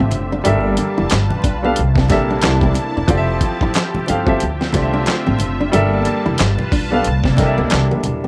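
A light reverb and soft vinyl crackle frame this brief, soulful, late-night neo-soul excerpt in G dorian at 91 BPM, swung on the sixteenths and moving through rich chords like Gm69, G9, C13 and Fmaj9. A gritty, compressed sampler-style drum kit sits up front with a thumpy kick, fat snare, hi-hat and handclaps, joined by a woody, dark pizzicato upright bass and very quiet, low-tuned, damped congas. A warm grand piano carries the accompaniment up front while a lush, detuned sawtooth pad with chorus and phaser holds sustained chords, and a fingerpicked nylon-string guitar with audible finger squeak and slapback echo plays a second line in the background.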